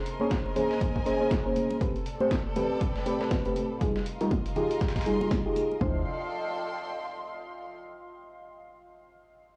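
A dry, gritty hardware recording with small-room ambience and faint mains hum carries this smooth, late-night deep house excerpt at 120 BPM with a swung sixteenth feel. An up-front overdriven electronic kick and a mellow, warbling FM electric piano playing stabs through chorus, tape, delay and a filter sweep sit over a detuned sawtooth ambient pad, veiled muted strings, a dusty sampler-style kit, a background analog drum machine and bright high-tuned congas, moving through Bbm9, Am9, Fm9 and Dm9. A hollow, organ-like FM bass enters at 5.8 seconds, and the strings carry on alone until 7.8 seconds.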